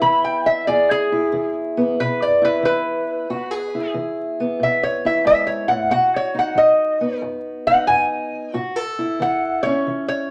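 Vinyl crackle and a moderate studio reverb frame this soulful, laid-back acoustic country blues excerpt in E major at 92 BPM with a swung 4/4 feel, where a metallic, nasal lap resonator guitar, played with a steel bar and fingerpicks, carries the slide melody up front across its 10.3 seconds over a dark, boxy parlour steel-string acoustic guitar fingerpicking the accompaniment, as the chords move from E to B at 5.9 seconds and to A at 8.5 seconds.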